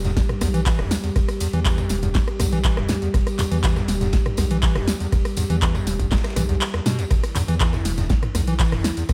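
A squelchy, overdriven acid groove sits in a studio reverb, with a deep, tape-warm electronic kick up front that enters at 0.2 seconds in this raw, hypnotic acid house fragment at 121 BPM in straight 4/4, held on E minor throughout. A hollow, resonant square-wave acid bass plays a riff with fast-attack filter plucks that decay, thickened by overdrive, lush chorus, cassette tape colour and delay. Beneath it, a thick, saturated sine sub bass sustains with sidechain pumping, while a dark, detuned analog pad holds moody sustained chords with slow attack, long release, ring modulation, chorus and its own sidechain pumping. A dry, punchy analog drum machine adds handclaps, hi-hat, rim clicks, toms and an overdriven snare with studio reverb. In the background, a gritty acoustic garage kit with a rolled-off top brings hi-hat, ride cymbal and a medium-tuned snare in a bright stone room, its cymbals and hats pumping, and a jingly, close tambourine joins at 0.1 seconds.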